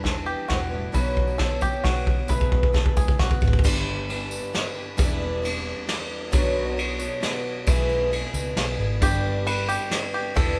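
Uplifting and nostalgic, this indie folk fragment in waltz-time 3/4 opens with a build-up and a drum fill before settling into a fuller second section. A vintage brush kit sits up front with a punchy kick, dark cymbals and a roomy, rolled-off sound, while a round, foam-muted electric bass holds the low end in the background. A shimmering, octave-doubled twelve-string acoustic guitar carries the accompaniment throughout, joined briefly by a bright fingerpicked steel-string guitar that drops out at 2.3 seconds. A twangy, percussive bluegrass banjo plays arpeggios until 3.6 seconds and returns at 9.0 seconds. A clear, intimate grand piano with audible action noise soon adds further accompaniment, and a jingly tambourine sits close and dry in the background, all captured as a band playing live in one room with light reverb and a faint mains hum.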